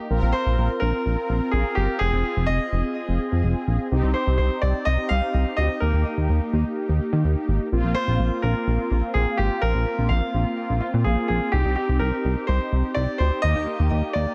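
Light reverb and a studio ambience frame this nocturnal, driving synth-pop excerpt in C minor at 126 BPM, tuned to A4 = 436 Hz. A dark, glossy synth bass with chorus and a filter pluck sits up front, while mellow synth brass, round and detuned with chorus and phaser, sustains chords moving through Bbsus2, Fm7, Cm and Eb. Above them, a clear, polished baby grand piano carries the melody from 0.3 seconds, touched by digital delay.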